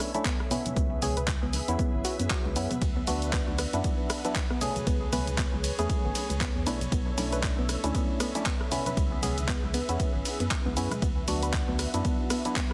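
Silky vintage string-machine chords with phaser and ensemble chorus, hollow chorused organ stabs with delay, and a layered drum kit of handclaps, hi-hat, ride cymbal, rim click and shaker open this moody, smooth deep house excerpt at 117 BPM with a swung 16th feel, soon joined by very quiet bright congas and bongos, a soft round delayed pluck playing arpeggios in the background, a punchy electronic kick from 0.3 seconds and a dark, percussive organ-like FM bass from 0.8 seconds, with the strings, stabs, pluck and bass all pumping against the kick over a Bm11, C#m7, D6 and Amaj7/C# progression inside a heavily compressed, radio-like sound with light digital reverb.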